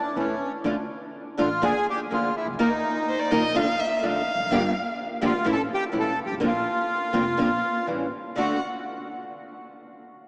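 Drenched in a cathedral-sized reverb and heard as if through a small speaker, this dreamy fragment of a tense, passionate tango moves with a rubato feel. A reedy, bright bandoneon carries the melody up front through an analog delay, while a fingerpicked nylon-string guitar with old strings and a woody tone adds chorus-tinged accompaniment, and a thumpy pizzicato upright bass on gut strings sits low beneath them. A single bowed violin, close and expressive with vibrato, portamento and a soft attack, enters at 3.1 seconds with a delayed second line, falls away at 5.0 seconds, and returns at 8.4 seconds as the harmony resolves to D.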